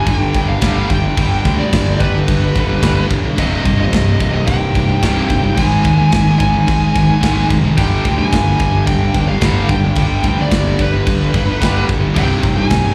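A high-gain lead guitar carries the melody with distortion and delay over a relentless, epic heavy metal passage at 109 BPM, alongside a very quiet, dark overdriven second lead line, while three picked rhythm guitars (a bright, double-tracked heavy part, a bright high-gain one and a dark, sludgy one) churn through a riff over G, Cm and Ab5, joined from 0.1 seconds by a fuzzy, overdriven electric bass in the background and a tight, gritty drum kit of crash, kick and medium-tuned snare that sits up front in a big room, all heard as a live club gig through the venue's PA with light reverb.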